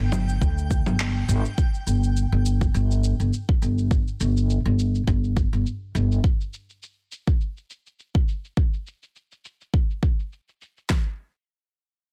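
A dense, heavily limited and dry mix opens this hypnotic, warm organic downtempo excerpt at 103 BPM with a lightly swung 16th feel, where a twinkling granular shimmer with its own reverb glints on a G5 until 1.6 seconds, a woody, up-front pizzicato upright bass holds the low end until 6.2 seconds, and a deep house kit with a deep kick and fat snare drives on through 11.0 seconds alongside tape-toned, low-pass-filtered electronic congas, cabasa and handclaps, all shaped by a filter sweep on the drums.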